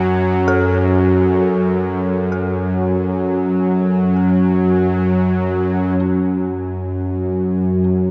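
A tense, string-like low drone sits up front from the very start of this ominous dark ambient excerpt in F# minor, its detuned sawtooth tone bright with vibrato and its own reverb, while a very quiet, airy pad sustains evolving chords alongside it. In the background, an eerie, inharmonic FM bell traces arpeggios through chorus, phaser and delay, and a bronze singing bowl rings softly, barely audible, until 6.0 s. From there, a filter sweep moves across the drone to the end at 8.1 s, the whole excerpt drifting in free time inside a cavernous cathedral reverb.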